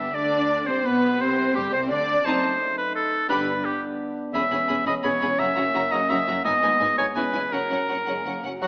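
A clear, up-front solo oboe carries a second line over a lush bowed violin section, whose focused, smooth-topped melody leads this spirited, cheerful passage from a dramatic romantic orchestral movement in a brisk triple metre. Beneath them, a second violin section sits close and in the background, violas add expressive accompaniment with vibrato and portamento, and soft-attacked cellos and double basses supply the bass. From 0.1 seconds a distant, roomy French horn section holds dark sustained chords, while the harmony moves restlessly through minor, diminished and seventh chords. Only at 8.6 seconds do a very quiet clarinet, an airy flute section and an up-front, mellow bassoon slip in, just as the cut from a longer piece ends. The orchestra sits in a wet concert hall reverb, yet the whole is filtered through an AM radio sound.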